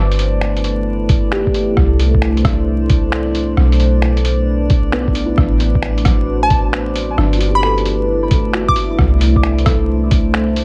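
Swung sixteenths at 133 BPM in 4/4 drive this wistful, nocturnal future garage excerpt, where a muffled, pitched-down sampler kit of finger snaps, hi-hat and rim click is joined at 1.1 seconds by a thumpy, tape-warm electronic kick, while a round, up-front 808-style bass and a deep, detuned ambient pad with chorus, reverb and sidechain pumping carry the G69, C6, Bm7 and Am69 chords; glassy, drifting harmonics float in the background, a boxy felt-muted upright piano with 12-bit sampler grit, analog delay and audible action noise sits low in the mix, and a hollow, bouncy square pluck with chorus and delay voices the melody from 6.4 to 9.0 seconds, all within a dark production marked by vinyl crackle and light reverb.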